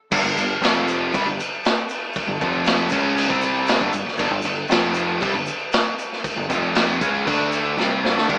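Classic rock at 118 BPM in a straight 4/4, this sunny, driving excerpt cut from a longer piece sets two picked guitars on a riff, one overdriven and warm, the other distorted, bright and in the background, above a growling, overdriven fingered electric bass, an up-front vintage drum kit with a punchy kick, dark cymbals and gritty, saturated tone that closes on a fill at 7.8 seconds, and a very quiet, grainy tube shaker, all heard as a band playing live in one room with moderate studio reverb and a small-speaker sound.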